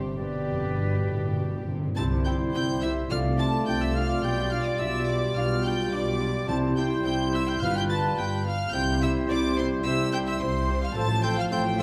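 In a flexible, rubato 4/4, this spirited and graceful classical-period orchestral movement, cut from a longer piece, sets a warm violin section's vibrato melody over a floating second violin line, airy distant flute, background clarinet and oboe, a very quiet dark viola section, mellow bassoon and sustained French horn chords, with double basses and cellos carrying the bass, hard-mallet timpani opening with a fill before stopping at 8.4 seconds, and clear trumpet stabs joining at 2.0 seconds, inside a reverberant recital hall.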